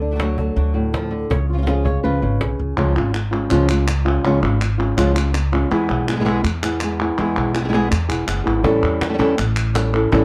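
Passionate and mournful, this short flamenco passage, cut from a longer piece, moves at 164 BPM in a straight 4/4. A dark, boxy lead flamenco guitar, thumb-plucked and up front, carries the melody throughout, opening with a nylon-string solo over chords moving from D to C#. A second fingerpicked flamenco guitar, warm in tone, adds chordal stabs until 2.4 seconds, while a woody cajon with faint snares and hard hands drives the opening before dropping out. At 2.8 seconds crisp palmas hand claps take over the percussion, the harmony shifting to E and then A7, where the cajon returns at 8.6 seconds. Underneath, a pizzicato upright bass with steel strings sits close and present, and the whole is framed by light reverb in a dark production.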